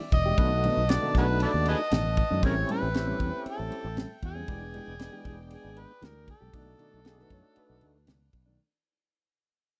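Soulful and swaggering, this straight-eighth soul blues moves in a steady 4/4 and fades out over its full 8.6 seconds, a short cut from a longer piece. An amplified, gritty harmonica carries the solo melody up front, jazz-inflected, with vibrato, tongue slaps and scooped notes. Beneath it, a tight, acoustic funk kit with a high-tuned snare, kick and ride sits close alongside a warm fingered electric bass, while an overdriven tonewheel organ fills in full, percussive accompaniment through chorus vibrato and a slow rotary speaker. Further back, a clean, compressed electric guitar adds mellow stabs, a brilliant horn section holds tight sustained chords, and a dark, woody upright piano slips in a brief second line from 7.1 seconds. The harmony cycles through B7#9, A7#9 and E7#9 back to B7#9, all captured as a dry, close recording in a small room with a 1970s studio character.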